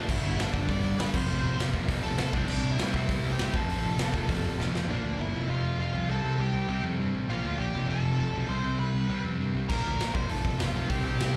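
A gritty, saturated garage drum kit sits up front with a punchy kick and a fill at 4.6 seconds in this upbeat, rebellious punk rock clip at 200 BPM, dropping out after 4.8 seconds and returning at 9.7 seconds, while a growly fuzz-picked bass, a dark high-gain lead guitar with slapback echo carrying the melody, and a bright crunchy guitar and a sludgy distorted guitar playing picked riffs in the background all play throughout, everything heard as a live gig through the venue's PA with club reverb.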